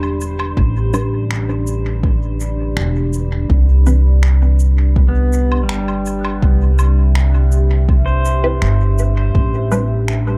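Deep and hazy, this ambient dub fragment drifts over a detuned, sawtooth-rich dark pad with slow attack and long release. A twangy pedal steel guitar plays filtered arpeggios through dub echo, and a woody pizzicato upright bass sits up front with tube saturation. An overdriven electronic kick enters at 0.6 seconds beside a faint bed of tape-tinged electronic woodblock, shaker and finger snaps, then a resonant, phased chord stab with a filter sweep arrives at 0.9 seconds as the harmony moves from Am11 to Cmaj7 at 3.5 seconds inside an echo-heavy digital ambience.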